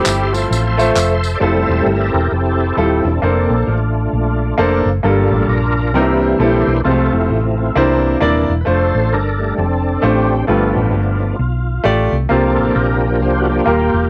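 A swung 132 BPM groove in 4/4 drives this soulful, reverent uptempo gospel excerpt in F major, where a dark horn section states the melody and close, dry handclaps and tambourine snap only in the opening second before a gritty, overdriven tonewheel organ with fast rotary speaker and chorus vibrato takes a solo from 1.4 s, backed by a clear, intimate baby grand piano with audible action noise and a round, punchy hollow-body electric bass, all bathed in a small room and the warbling pitch drift of worn cassette tape.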